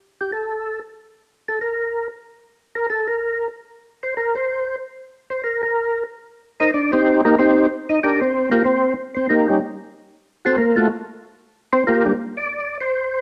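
A percussive tonewheel organ takes the spotlight here, playing a solo from 0.2 seconds to the end at 13.2 seconds in a bluesy, soulful jazz passage cut from a longer piece. The organ sits up front with a full, lightly overdriven voice, its second-harmonic percussion giving each note a crisp bite while a chorus vibrato and a slow-turning rotary speaker add gentle movement. The tempo is a brisk 187 BPM in 4/4 with a swung eighth-note feel, set in G minor and tuned slightly below standard pitch. The line moves between G3 and Eb5 over changes that begin unaccompanied by chords, then pass through Cm7 at 3.8 seconds and on to Gm7, Eb7, Am6 and back to Gm7. A stone room reverb gives the sound a live, roomy ambience, as if heard in the same space as the players.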